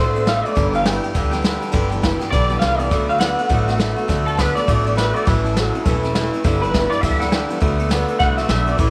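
A twangy, slightly broken-up electric guitar carries the lead melody through a small old amp, coloured by ensemble chorus and tape echo, in this rollicking, rowdy rockabilly passage cut from a longer piece, swinging at 204 BPM in D major over chords of D6, G6 and A6. Beneath it, a second lo-fi, bright electric guitar plays a low fingered riff, a fresh-stringed, full-bodied dreadnought acoustic adds picked accompaniment with audible finger squeak, and a woody, thumpy upright bass on gut strings pulses underneath. A jazz kit played with brushes joins at 0.2 s up front, with a boomy kick, medium-tuned snare and dark ride cymbal, all set in a moderate spring reverb.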